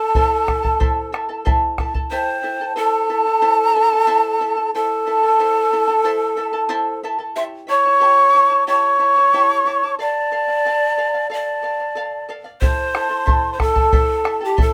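A mellow, hollow wooden quena carries the melody from the start of this festive, earthy Andean folk excerpt, shadowed by bright, chiffy cane pan pipes up front on a second line and the shimmering fingerpicked double strings of a charango, while a deep, dry bombo drums only from 0.1 to 2.1 s and again from 12.6 s, the band playing live in a small, moderately reverberant room as the chords move from Am through A7 and Dm back to Am.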